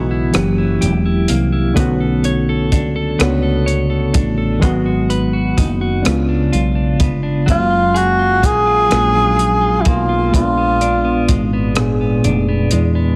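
A dark, tremolo-treated clean electric guitar, a reedy, worn and slightly out-of-tune electric piano, and a growly, round fretless bass with subtle chorus open this intimate slow six-eight R&B excerpt in F# major at 42 BPM, joined at 0.3 s by a compact cocktail kit of tight kick, hi-hat and rim click with a rolled-off top, before a breathy, whispered tenor saxophone with vibrato, scooped notes and slapback echo enters up front at 7.5 s over lush extended chords like F#7b9 and F#maj9, all under light studio reverb and a heavily compressed radio sound.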